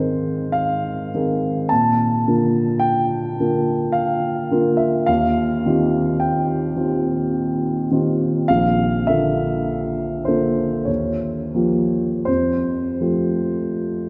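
A warm baby grand piano, up front with a natural tone and long sustain, plays alone from 0.0 to 14.1 seconds in this hazy, luminous excerpt of impressionist classical solo piano, drifting in a rubato 3/4 at 40-54 BPM through lush chords such as Ab69, Bbmaj7#11 and Fadd9, spanning Bb1 to A5 and tuned to A4 = 441 Hz, all bathed in a wet cathedral reverb of a church or concert hall.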